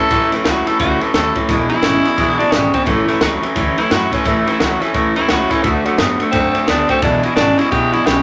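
A raspy, growling tenor saxophone solo opens this rowdy, upbeat rockabilly passage in A major, riding over a twangy, slightly broken-up lo-fi electric guitar riff that sits up front and a bright, full-bodied picked acoustic dreadnought. At 0.1 s a woody, thumpy pizzicato upright bass with gut strings joins a compact cocktail kit, dry with dark cymbals, a high-tuned snare and a punchy kick, driving a swung 173 BPM feel through A, E7 and D. A moderate large-studio reverb surrounds the band, and the passage is cut from a longer piece.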